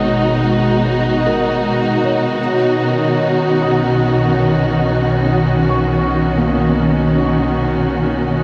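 Serene and melancholic, this short ambient passage in free time drifts through a huge, reverb-soaked space that gives the whole mix a dreamy haze. Up front, a dark symphonic string section holds lush, bowed chords with expressive vibrato and a smooth top, moving from G#m7 to Badd9 at 2.4 seconds. Behind it, a felt-muted upright piano plays soft, intimate arpeggios, its thick felt and audible action noise coloured by subtle chorus and a diffuse ambient delay. A hand-pumped harmonium breathes a reedy drone from the background, boxy as if in a small room. Beneath everything, a deep, ominous drone with a detuned, nasal edge fades in across the full 8.4 seconds, rumbling in the bass with its own built-in reverb.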